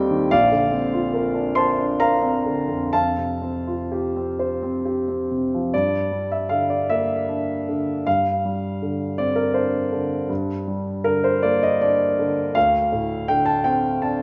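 A warm, up-front concert grand piano with deep bass and an open tone plays this nocturnal, mysterious impressionist solo piece in a rubato triple metre, its moderate concert-hall reverb and rolled-off highs setting the mood before the music moves into a second section at 5.7 seconds, where minor-leaning harmonies darken the fragment cut from a longer work.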